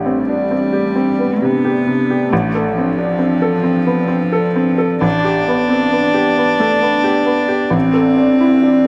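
A bright, slightly detuned upright piano and a very quiet, hollow, flute-like pad open this melancholic, fragile neoclassical fragment in a rubato 3/4 at 67 BPM, joined at 0.1 seconds by a rich, bowed sul tasto cello with a soft attack and slapback echo as a second line, the piano and cello sitting up front under close, detailed microphones and light reverb while the chords move from Csus2/A through Dm7/A and G/A over an A bass.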